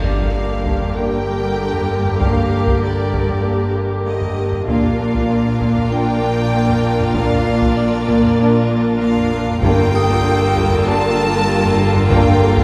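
This mysterious, uneasy cue from a suspense film score opens with the full string body at once: an intense, close violin section carries the melody above a second violin line with an expressive vibrato, while a lush viola section sits distant in the background. Beneath them, a double bass section with a smooth top and a very quiet chamber cello section hold the low end, and a bright, thumb-plucked Celtic harp rings out a riff from the background. A nostalgic, lo-fi pad warbles through sustained chords with a slow attack and chorus, joined by a metallic vibraphone struck with hard mallets, both very quiet. Taiko drums played with hard sticks enter just after the start, a tight, mellow French horn section adds sustained chords from 1.0 seconds, and a very quiet timpani with articulate hard mallets sounds at the opening and again later. At 4.7 seconds a further violin section comes in high as a smooth, even texture, as the harmony moves from a minor seventh chord to a major chord and back. 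The production is dark and warm, set in a moderate scoring stage reverb, and this cut is taken from a longer piece.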